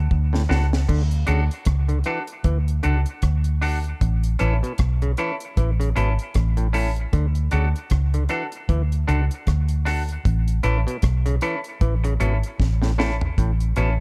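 A dark, round, foam-muted electric bass opens this laid-back, uplifting roots reggae excerpt at 0.0 seconds, joined almost at once by a deep reggae drum kit whose fill runs from 0.1 to 0.9 seconds. Set at 77 BPM in 4/4 with a gentle 16th-note swing and tuned slightly sharp to A4 = 445 Hz, the groove moves between D and A chords. The bass sits up front, amped and punchy in its low register, while the dry acoustic kit brings a tight kick, a high-tuned snare, rim clicks, hi-hat, toms and crash cymbal. An overdriven clav plays stringy, percussive arpeggios through a combo amp, and a clean, picked semi-hollow electric guitar adds compressed, hollow-body accompaniment colored by tube saturation and tape echo. The whole mix sits in an echo-heavy studio ambience, and a second drum fill from 12.6 to 13.4 seconds rounds off the passage before the cut.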